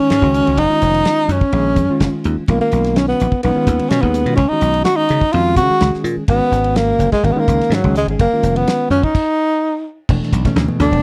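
A breathy tenor saxophone leads this short cut from a longer electric jazz fusion piece, its dark, whispered subtone sitting up front with vibrato, scooped notes and a touch of slapback echo. The mood is driving and intense at 126 BPM in a straight 4/4, with chords moving through F#maj9, Bmaj9#11, C#sus4, G#m7 and F#sus2. Underneath, a punchy, foam-muted thumbed slap bass sits close and direct, while a damped 1970s drum kit with a tight kick, medium-tuned snare, hi-hat, ride and crash enters at 0.1 seconds with a rolled-off top. A reedy electric piano stays in the background, lightly overdriven and shimmering with fast tremolo through its built-in speakers. The band hits a stop at 9.1 seconds, then lands on an E7sus4 at 10.1 seconds as ringing congas slip in softly at 10.5 seconds. The sound is dry and close, a 1970s-style studio room with only light reverb.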